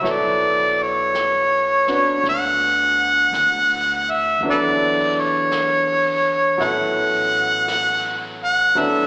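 A warm harmonica carries the melody up front in this slow, late-night jazz ballad, singing with light vibrato, scooped notes and tongue slaps in a solo jazz style. Beneath it, a clear baby grand piano accompanies with long sustain and audible action noise, moving through Bm9, E9sus4 and A69 over the 9.1 seconds of this cut from a longer piece. A woody pizzicato upright bass sits low in the mix, while a brushed jazz kit of snare and hi-hat stays in the background, touched by a slapback echo. At 55 BPM in 4/4 with a swung eighth-note feel and tuning at A4 = 436 Hz, the mood is intimate and unhurried. The sound carries a moderate club ambience, as if heard live through the venue's PA, with recital hall reverb and the narrow colour of AM radio.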